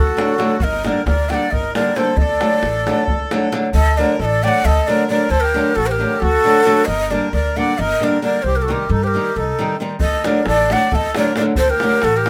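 A breathy, close-miked ney carries the unsteady, vibrato-laden melody up front in this fiery, virtuosic Balkan wedding-band folk piece in 7/8, over a reedy accordion second line with slow beating, fingerpicked flamenco guitar, woody pizzicato upright bass and a tight davul in the background that drops out at 3.7 seconds and returns at 10.0 seconds, all set in a small room.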